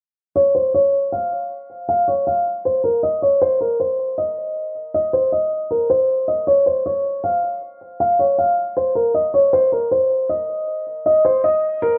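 This melancholic, eerie hip hop fragment moves at 157 BPM in a half-time 4/4 feel, cut from a longer piece. A felt-muted upright piano carries the melody from 0.4 to 12.0 seconds, sitting between Bb4 and F5 with a soft, intimate, thick-felt tone placed up front and colored by cassette tape. A filter sweep runs across that same span, and moderate spring reverb with small room ambience and the low-pass haze of a home cassette recording give the sound a hushed, close character.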